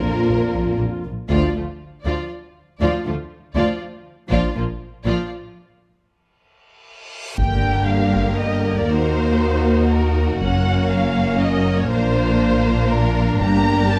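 Distant, lush first violins carry an expressive, portamento-laden melody over focused second violins, smooth violas, expressive cellos and rich double basses in this relentless, brooding epic orchestral film cue at 119 BPM in 3/4, with a very quiet trombone section heard only at the opening, roomy French horns holding dark chords in the background, heavy-sticked taiko entering at 1.3 seconds, and a huge, bright reverse cymbal rising from 6.9 seconds into an impact at 7.4 seconds, where the music settles into G minor.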